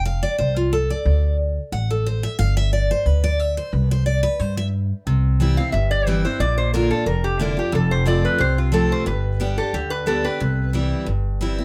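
A picked steel-string dreadnought guitar leads this joyful, virtuosic bluegrass passage at 180 BPM in C major, its full-bodied, bright tone and audible finger squeaks carrying a solo until 5.1 seconds over a woody, thumpy pizzicato upright bass on dark gut strings. At 5.6 seconds a lap resonator guitar takes up the melody, its bright, metallic, nasal slide lines played with fingerpicks. The sound is dry and closely miked in fine detail, with all three instruments up front.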